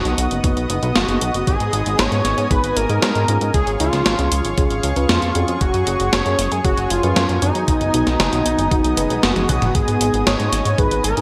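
A thick, detuned unison lead with vibrato and delay carries the melody from the opening moment over a smooth supersaw pad that pumps to the sidechain, and within a fraction of a second a glossy, nasal chorused synth bass, a mellow FM electric piano with 12-bit grit playing stabs in the background, and an up-front 80s drum machine with gated-reverb snare, hi-hat and toms all join in. This moody, cinematic synthwave piece in G# dorian moves at 116 BPM in a straight 4/4 over a B, G#m, C#, F#sus2 progression, with a thumpy, tape-warm electronic kick arriving at 0.4 seconds. A very quiet electronic swell enters at 9.0 seconds and carries on through a drum fill at 9.4 seconds, all set in a moderate plate reverb with bright 1980s-style digital production.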